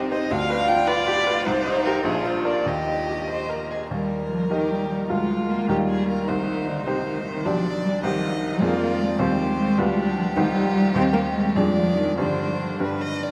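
A vast, echoing cathedral reverb washes over this brief, stormy cut from a quick classical-period movement for piano quartet, moving in a straight 6/8 at 95-105 BPM and turning from Eb major to C minor at 8.6 s. A bright, brilliant, slightly worn baby grand piano sits up front with the accompaniment, while a dark violin carries the urgent melody from the background with vibrato, portamento and a smooth top. A rich, focused second violin and a close, warm cello add second lines, the expressive cello's soft attacks gliding with portamento before it stops at 12.8 s, just as the final G chord arrives.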